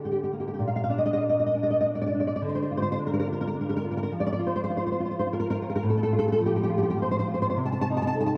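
The rhythm sways in 3/4 at about 103 BPM, with uneven beats and a free rubato that lets the phrases breathe and stretch. This brief romantic cut from a longer piece for solo classical guitar is intimate and passionate, set in Bb major and tuned to A4 = 436 Hz. A single nylon-string guitar, thumb-plucked, dark and full-bodied, sits up front and spans A2 to A5, its tone colored by an ensemble chorus and a tape echo. The harmony moves from Gm into Bb and Bbadd9/D, passes through a chordless stretch at 4.1 seconds, then settles on F/A before ending on Adim/C at 7.6 seconds. A lush hall reverb with a long 2.9-second tail soaks the mix in a dreamy haze.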